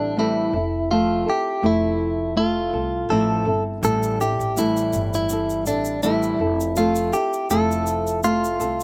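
A dry outdoor sound frames this sunny, carefree acoustic pop excerpt at 82 BPM with a light sixteenth-note swing, where a bright, scooped, compressed clean electric guitar with slapback echo carries the melody up front over a dark, thumb-plucked flamenco guitar moving between Am7 and Fmaj7, a woody, growly pizzicato upright bass sits low beneath, and a grainy, saturated egg shaker joins at 3.8 seconds.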